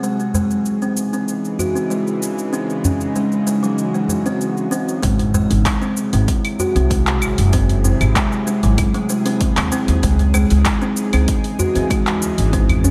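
A ringing, hollow kalimba plays up-front arpeggios through this meditative organic downtempo excerpt at 96 BPM, over a tense, string-like sawtooth drone that sustains chords moving between C#madd9 and G#7b13 with sidechain pumping, alongside a small acoustic udu and an overdriven deep house kit of cabasa, claves, handclaps and hi-hat, before a growly, thumpy pizzicato upright bass and a deep, overdriven electronic kick join at 5.0 seconds, all set in a wet, big arena-like space.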